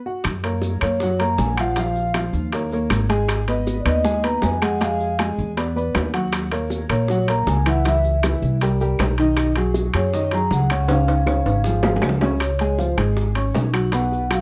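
Lively and sunny, this Afro-Cuban jazz excerpt sets a clear, slightly detuned upright piano and a dark, pizzicato upright bass up front. The bongos and claves sit in the background, joined by maracas and ringing, vintage timbales. A mellow vibraphone played with soft mallets carries the melody from 0.8 seconds, and after a drum fill at 10.9 seconds it takes a short solo at 12.4 seconds, all in a close, dry and detailed sound.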